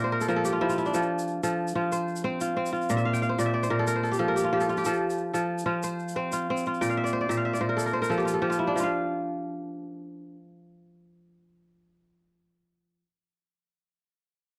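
The recording is dry and close, with the intimate feel of a 1970s studio and little reverb. This flowing, joyful passage of West African traditional music is cut from a longer piece and moves at 123 BPM, counted in dotted quarters within a straight 12/8 metre, tuned slightly below standard pitch at A4 = 436 Hz. The fingerpicked kora sits up front, spinning ringing, crisp arpeggios that span from Bb2 to G5 and carry the piece throughout, with fills woven into its lines. Beneath it, a grainy, band-limited egg shaker adds a bright, vintage shimmer from 0.2 seconds until it stops at 8.9 seconds. The harmony rocks between Bb5 and F, and from 8.8 seconds the chords fall away; once the shaker drops out a moment later, the kora continues alone.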